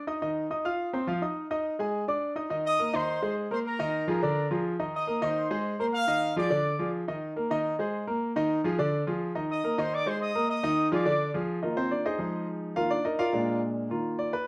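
Latin music at a brisk 210 BPM in straight 4/4, this short cut from a longer piece feels joyful and sunny. A concert grand piano carries the accompaniment throughout, its tone clear and polished with a deep bass, sitting present and up front. A tight trumpet section takes the melody in two phrases, the first entering at 2.7 seconds, with a bright pop character and light vibrato, also placed up front. The harmony circles around Ebsus2, Abadd9/Eb and Eb5, touched by Bb7 and Ddim, before the piano plays alone from 11.6 seconds over Fm7 and Bb7. Moderate studio reverb and a dark, warm production frame the performance.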